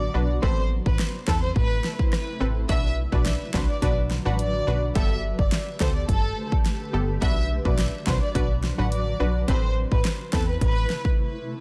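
A punchy, up-front electronic pop drum kit with a fat snare and bright hats drives this tough, sultry dancehall excerpt at 106 BPM in B phrygian, where a funky sawtooth analog bass and a detuned, chorused analog pluck sit beneath a smooth bowed violin section carrying the melody with light vibrato and digital delay, while a cloudy granular pad with sidechain pumping sits in the background through Amadd9, Bm and Gadd9 chords before a brief break at 11.2 seconds.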